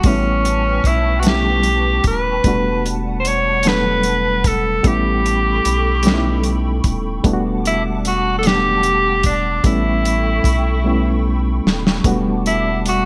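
A bright, punchy tenor saxophone sings a sultry, late-night melody with vibrato over a slow six-eight R&B groove at 50 BPM in E dorian, backed from the start by a reedy, worn electric piano with fast tremolo, a hollow pad with ensemble chorus in the background, a round, deep analog bass and a muffled soul drum kit with gated reverb. The chords alternate between A9 and Em11, and a drum fill at 10.8 seconds leads back into the same section at 12.0 seconds. Light small-room reverb and a bright 1980s-style digital production frame this fragment of a longer piece.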